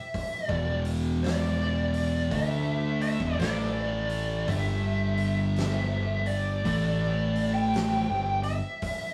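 Brooding and hypnotic, this short stretch of stoner and doom metal crawls along in a heavy swung pulse, cut from a longer piece. Two thick fuzz guitars grind out the riff from 0.5 seconds, one warm and distorted, the other darker and set in the background, while an overdriven fingered electric bass adds a growly low end beneath them. An oversized low-tuned drum kit, with a fat snare, punchy kick and hi-hat, sounds saturated and gritty in a bright, pumping stone room. Up front, a compressed fuzz lead guitar carries the melody with wah and distortion, its dark tone sitting high over the power-chord movement between E5, A5 and G5. The whole take has the rough feel of a rehearsal room, with a moderate stone reverb and small-room ambience thickening the sludge.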